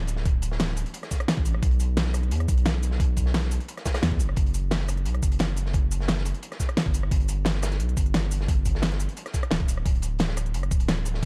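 Rolling and melancholic, this short excerpt of liquid drum and bass moves at 175 BPM in a straight 4/4, sitting in B minor with the tuning set slightly low at A4 = 439 Hz. A deep, thick saturated sub bass opens the track at 0.0 s, its sine-like tone sustained and up front with a fast attack, ranging from D1 to E2. At 0.1 s two drum kits join: a produced pop kit carries a fat snare, crisp hats, rim click and shaker with a tape-tinged character, while a quieter crunchy breakbeat kit adds a gritty, saturated small-room hi-hat and medium-tuned snare with a rolled-off top, its hats, snare and room all high-pass filtered. An electronic kick drum with a knocking, layered sound enters at 0.3 s and sits prominently in the mix. The overall production is dark and warm, with little reverb, and all parts play through to the end.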